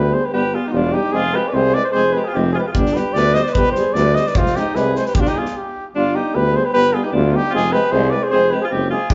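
A lilting 2/4 pulse with a light swing on the sixteenths drives this Balkan brass band fragment, and the tempo keeps pushing forward as it goes, giving a restless, bittersweet mood over chords that sway between G and F minor. A mellow cornet carries the melody up front in a classical style, while a clear alto saxophone with light vibrato adds a jazz-inflected second line beneath it. The tuba anchors the bass, and a distant, roomy euphonium and a warm trombone sit in the background holding the accompaniment. An acoustic drum kit with a medium-tuned snare and a tight kick comes in up front at 2.7 seconds and drops out at 5.5 seconds, just before the whole band halts briefly, then it returns at the very end. The band sounds as if playing live together in one large studio, bathed in a wet reverb, with a soft top end that keeps the sound rounded.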